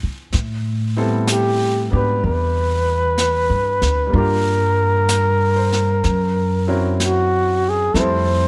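A breathy, mellow flugelhorn with light vibrato carries the melody from 1.3 seconds in this intimate, melancholic swung jazz ballad fragment, set up front over a woody pizzicato upright bass, a clear concert grand piano whose audible action noise adds vintage character to its accompaniment, and an airy brushed drum kit on snare and hi-hat, all captured with close, detailed microphones and little reverb.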